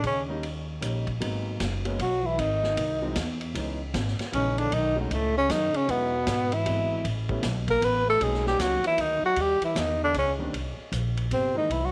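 A breathy, whispered tenor saxophone carries the melody up front from the start, with a mellow trombone playing a second line in the background, a woody pizzicato upright bass with tube saturation, a vintage drum kit with dark cymbals and a gritty, rolled-off top, and a warm upright piano entering at 0.3 seconds, giving this cool, late-night small-group swing excerpt in 3/4 an intimate, small-room glow.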